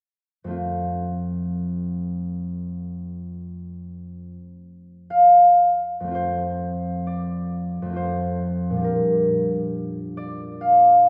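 Peaceful and serene, this brief classical passage for solo concert harp moves in an unhurried, rubato 3/4 at roughly 55-69 BPM in F major, tuned to A4 = 443 Hz, its bright, ringing, thumb-plucked tones sitting up front from 0.4 seconds and spanning F2 to F5, bathed in a lush church reverb that lingers around 3.3 seconds, with the harmony moving from F to Gm/Bb at 8.8 seconds.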